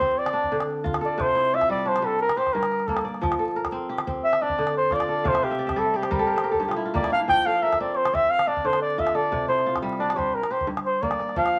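Vinyl crackle and a moderate studio reverb give this short excerpt from a longer piece of West African traditional music a softly aged glow. Over a 12/8 pulse, a trumpet with a bucket mute carries the melody as an up-front jazz-style solo that runs from the start to 11.4 seconds, its veiled, breathy tone shaped by a soft attack and vibrato. Beside it, a fingerpicked kora plays ringing, crisp arpeggios across a broad span, adding a fill between 5.3 and 7.3 seconds. A deep calabash keeps the percussion close and dry beneath them. The harmony circles through Dm, C, Gm and F again and again, giving the whole a warm, hypnotic feel.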